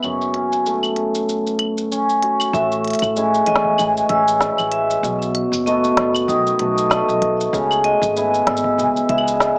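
A lightly swung 96 BPM groove in 4/4 from an organic electronic drum kit of woody snare, crisp hats, claves and shaker drives this hopeful folktronica excerpt, where an up-front, shimmering cimbalom with tape echo plays arpeggios over a pizzicato upright bass with tube saturation, joined at 2.5 seconds by a bright, close-miked vibraphone with hard mallets and slow motor vibrato and a soft, tape-warm electronic kick in the background, all heard through a small room's reverb and a low-passed, small-speaker tone.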